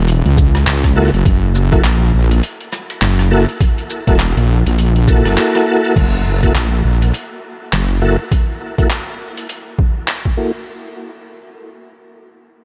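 This swaggering, playful glitch hop excerpt opens on a drop, with a heavy, wobbling sawtooth bass sitting up front, its detuned, saturated tone thickened by chorus over an F#7#9 chord. Almost at once a gritty, pitched-down boom bap sampler-style kit joins with crash cymbal, handclaps, hi-hat, rim click and shaker, overdriven and re-recorded in a large room, while a thumpy electronic kick drum punches up front with the same compressed, overdriven grit. The swung sixteenth-note feel gives the groove a loose strut. From 1.0 seconds a smooth, clean tonewheel organ adds stabs through chorus vibrato, a fast rotary speaker, sidechain pumping, a low-pass filter and tape echo. In the second section, from 6.0 seconds, a filter sweep on the organ begins; the bass stops at 8.2 seconds, and the sweep carries the passage to its end in a light reverb.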